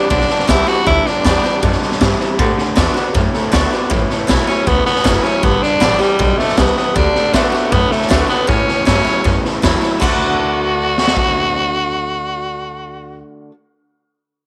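Rockabilly with a rollicking, retro spirit, this short cut from a longer piece moves at a brisk, straight four-beat pulse through G, D and A chords before settling on D as a second section begins at 10.0 seconds. A raspy tenor saxophone carries the melody up front, edgy and gritty with vibrato and scooped notes, its slapback echo giving it a vintage snap; it sounds a brief phrase at the start, drops out, then returns at 4.5 seconds. Beneath it, a bright, boxy acoustic guitar is picked in a swing style, while an electric guitar through a small old amp plays a twangy, slightly broken-up riff with a lo-fi character. A woody, growly upright bass is played pizzicato on steel strings, dark and low. The raw garage drum kit sits prominently, with a high-tuned snare, boomy kick, hi-hat and crash, saturated and gritty with a rolled-off top and a stone-room brightness, and it stops at 11.3 seconds while the other parts play on. 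The mix is dry, with little reverb.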